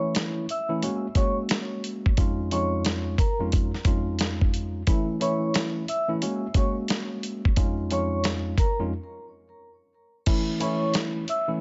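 A swung 89 BPM boom-bap groove from a gritty, compressed sampler-style drum kit, with a thumpy kick, medium-tuned snare, hi-hat and crash sitting up front, drives this confident, warm hip-hop excerpt under a worn, slightly out-of-tune tine electric piano lightly overdriven with a cassette-tape tint, while a mellow, close-miked vibraphone with soft mallets and slow motor vibrato carries the ringing melody through a delay in a dry, dark-topped mix that reaches a break at 8.9 seconds before the A, Gbadd9 and Dbadd9/F cycle starts again at 10.3 seconds.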